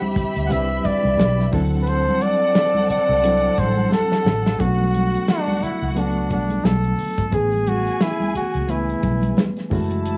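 A clear, punchy flugelhorn carries the melody from the start with scooped notes and light vibrato, over a dark, woody string section, a reedy, lightly overdriven electric piano with fast tremolo, and bright, thin-skinned congas set in the background, the horn, strings and keys sharing a cassette-tape colour. A round, foam-muted fingered bass and a dry, up-front soul drum kit with a tight kick join at 0.2 seconds, giving this smooth, silky, lush 1970s-style soul cut a swung sixteenth-note feel. A drum fill at 3.9 seconds leads into a new section at 4.6 seconds, all within a small, home-recorded room sound.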